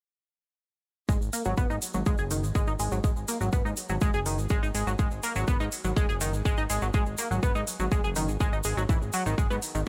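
Cut from a longer piece, this dark, driving melodic techno passage opens at 1.1 seconds with a punchy, up-front kick, a fat detuned sawtooth bass, a grainy tube shaker and a tight, bright sequenced synth arpeggio colored by ring modulation, chorus and analog delay, bass and synth both sidechain-pumped, while metallic hi-hats joining at 1.3 seconds fill out a dry, gritty mix that moves from G#5 to an E chord at 8.9 seconds.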